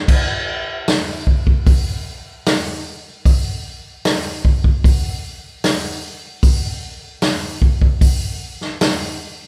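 Brooding and gritty, this short rock excerpt rests entirely on a vintage acoustic drum kit playing a straight 4/4 feel. The kit comes in at 0.1 seconds and plays until 9.0 seconds, using kick drum, snare, hi-hat and crash cymbal. Its sound is natural and up front, with a punchy kick, a medium-tuned snare and dark cymbals. A rolled-off top gives the kit a warm character. Light reverb and the feel of a band playing live in one studio room leave the drums sounding close and natural.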